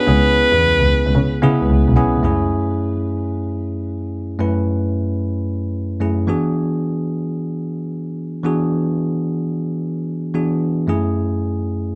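Punchy and bouncy, this short R&B cut in a new jack swing style moves at 111 BPM in 4/4 with a swung sixteenth-note feel in F# minor. A bright alto saxophone opens with a brief pop-style solo phrase held at B4, colored by light vibrato and tape echo, before falling silent at 1.7 seconds. Beneath it, a clear double bass, bowed by one player with vibrato, sits focused yet slightly distant in tone while staying up front, and it drops out at 2.2 seconds. The bell-like tine electric piano carries the accompaniment through the whole passage, clean and direct, moving over C#m7, then F#m7, E7 and back to F#m7. From 2.2 seconds the piano plays alone, giving the rest of the cut a crisp, uncluttered sound in a light studio reverb.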